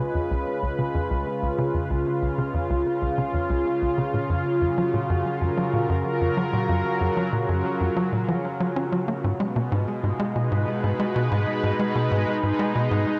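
Expansive and cosmic, this excerpt of sequencer-driven space music rests on a lush, detuned unison pad that sits up front with a slow attack, chorus and a vintage, warbling cassette-tape character, holding chords that move from C#7 to F#maj7 at 4.1 seconds and G#m at 9.2 seconds. Beneath it, a tight sequencer bass drives a punchy, nasal sawtooth riff with a fast filter pluck and analog delay, while a very quiet vibraphone played with medium hard mallets traces dark, ringing arpeggios with a medium motor vibrato. A wet spring reverb and the intimacy of a home cassette recording wrap the parts together.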